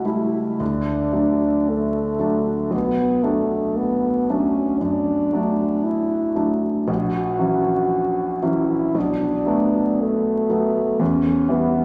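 A French horn and a concert grand piano begin together in this lyrical, romantic classical duo, the horn carrying the melody with a distant, roomy tone while the piano accompanies with an intimate sound, deep bass and audible action noise. The rubato phrasing moves through chords such as Bm7 and F#7/A# before settling on Em at 11.0 seconds. A wet recital hall reverb and a touch of vinyl crackle give this warm fragment of a longer piece its glow.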